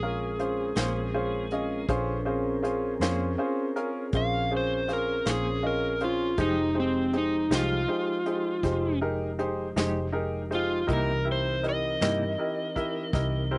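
Brooding and mournful, this short slow blues in F minor moves at 53 BPM in a straight 12/8, with an overdriven slide guitar singing the melody up front over a bright, woody upright piano touched by slapback echo. A mellow, flute-like tonewheel organ holds sustained chords through a slow rotary speaker, while a dark, round, foam-muted electric bass and a brushed drum kit with a punchy kick and medium-tuned snare anchor the changes from Bbm9 to Fm9 and on to C7#9. A clean, twangy electric guitar with tremolo sits in the background, entering at 0.8 seconds and dropping out at 12.2 seconds, and the dry outdoor recording has little reverb and a muted top end.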